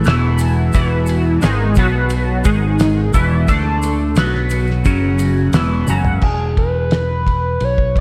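Psychedelic rock with a hazy, hypnotic pull, where a bright, twangy twelve-string electric guitar with flanger plays a riff up front over fingered electric bass, a dry, damped 70s drum kit with a fat snare and dark cymbals, a very quiet, mellow string machine holding sustained cello chords, and a grainy tube shaker in the background. The shaker drops out at 6.0 seconds, and after a drum fill the guitar and strings stop at 6.2 seconds as a gritty, screaming overdriven synth lead with vibrato and analog delay takes the melody. The whole dreamy mix is soaked in lush hall reverb, and the piece is cut from a longer one.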